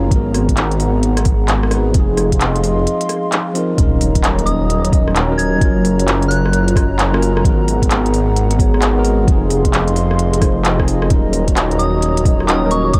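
Swung 16ths in 4/4 drive this ghostly, rainy future garage excerpt: a soft, overdriven electronic kick and an organic electronic kit of handclaps, smooth hi-hats and rim clicks sit in a small-room sound over a menacing, saturated detuned saw bass that pumps with sidechain up front. A clean tine electric piano with digital delay and a deep, moody analog pad with chorus and ring modulation carry seventh and ninth chords, both breathing with the same pumping. After a brief break, a very quiet sub drop lands at 3.8 seconds, and a pure, mellow FM bell with chorus, phaser and delay floats a high melody from 4.5 seconds and again from 11.8 seconds, all under light reverb and a bed of vinyl crackle.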